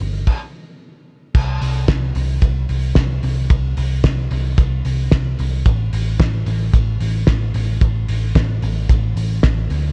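A straight 4/4 groove from a cloth-damped, thuddy drum kit with a fat snare, tight kick and dark cymbals sets this nostalgic, youthful piece of jangly indie pop in motion, breaking off in a brief stop from 0.3 to 1.3 seconds before settling into its main stretch. Up front beside it, a vintage foam-muted picked electric bass plays a round, punchy low line colored by tube saturation, while the drums carry a gritty 12-bit sampler edge. Light reverb and a cassette-tape sheen give this short cut from a longer piece a homespun, small-room feel.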